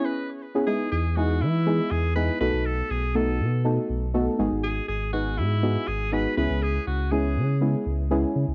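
A home cassette recording with a light reverb carries this summery, euphoric dance-pop excerpt in E major at 121 BPM, cut from a longer piece. A brief break opens on deep, mellow, detuned chord stabs treated with chorus and tape, and an edgy, punchy alto saxophone sings a vintage pop-style solo melody with light vibrato, plate reverb and analog delay until 7.6 s. The drop arrives at 0.7 s, and a full sine sub bass with octave joins up front at 0.9 s beneath chords moving through Emaj7, B7 and G#m7 and back to C#m7.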